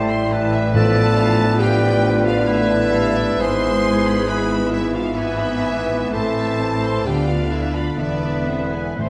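Classical, a solemn and elegiac slow romantic movement for symphony orchestra in 3/4 at 58-72 BPM with rubato, where a lush, expressive bowed violin melody entering at 0.7 s sits over a soft-attack violin second line, a hollow flute, a clear and distant oboe, and a dark clarinet, with smooth violas, a warm bassoon, sustained chords from a dark French horn section, very quiet ringing harp arpeggios, distant cellos, portamento double basses, and faint round timpani, all in a recital hall reverb across chords moving from Am through E/G# to E7.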